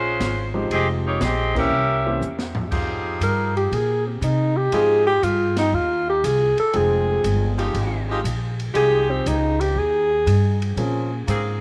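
A swung 4/4 big band groove carries this dramatic, sultry excerpt, with a woody pizzicato upright bass and a dark, smooth acoustic drum kit underneath a warm grand piano. A clear, tight saxophone section states the opening melody with tape echo, the band hits an accent at 1.5 seconds, and a drum fill leads into a new passage. From 3.2 seconds a breathy, subtoned alto saxophone solos with scooped notes and tape echo over mellow sustained saxophone-section chords, all set in a moderate echo-chamber reverb.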